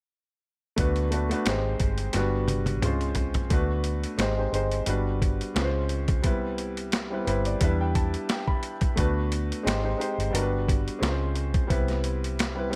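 Lush 1970s-style soul at 88 BPM with a lightly swung 16th feel, this romantic excerpt sets an intimate, up-front concert grand piano, rich in deep bass and audible action noise, over a dark, round, foam-muted electric bass and a gritty, compressed, pitched-down boom bap sampler-style kit with a thumpy kick and high-tuned snare, all three entering at 0.8 s, with a drum fill at 2.1 s, a piano fill at 6.9 s, and chords such as D6 and G#maj7 set in digital ambience.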